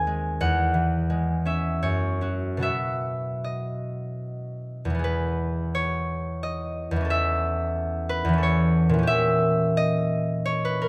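In a flexible triple metre with a rubato feel, this short classical excerpt for solo concert harp unfolds in a dreamy, graceful mood. The acoustic harp carries everything alone, fingerpicked across a span from D#2 up to G#5, its bright, ringing tone sitting up front in the mix. Close, detailed microphones capture the instrument with a light reverb around it. The opening passage moves through C#m/E, F#5 and B before a new section arrives at 5.0 seconds on an E chord. From there the harmony shifts to A/E and reaches an A#dim7 at 9.1 seconds, holding there as the clip ends at 10.9 seconds.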